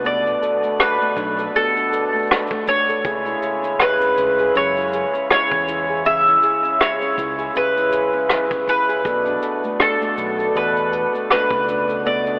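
A picked, round-toned mandolin sits up front, carrying the melody through a tape echo in this autumnal, intimate folktronica piece, cut from a longer work, moving at 80 BPM in 4/4 with a light swing on the sixteenths in B dorian. Beneath it, a hand-pumped harmonium holds sustained chords with a reedy, breathing, nasal quality, while a mellow, thumb-plucked Celtic harp rings out arpeggios that also pass through tape echo. A bright, overdriven fingered electric bass adds a punchy, amped low end, sitting well back in the balance. Cabasa and rim click, brushed and rolled-off at the top, keep time from the start, and a warm, punchy kick drum joins in the background at 1.2 seconds. The harmony moves from Bm7 to C#m at 3.1 seconds and returns to Bm7 at 9.1 seconds, all wrapped in a huge, dreamy ambient reverb with a telephone-like colour.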